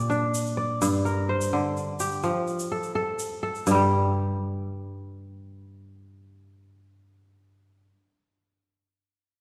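A fingerpicked kora opens this reflective, hypnotic piece of West African traditional music, its ringing arpeggios sitting up front and spanning G2 to D5 across the full 8 seconds of this short cut from a longer performance. Almost at once a grainy, bright tube shaker joins in well beneath it, its band-limited, vintage tone adding a soft rustle before it drops out at 3.9 seconds. The music moves at 84 BPM in a straight 12/8 in G minor, with the kora's crisp, acoustic voice tracing Bb, Gm and F before settling on a Gsus2 as a second section begins at 3.7 seconds. A generous recital hall reverb surrounds the recording, lending the plucked strings a spacious, church-like resonance that deepens the trance-like calm.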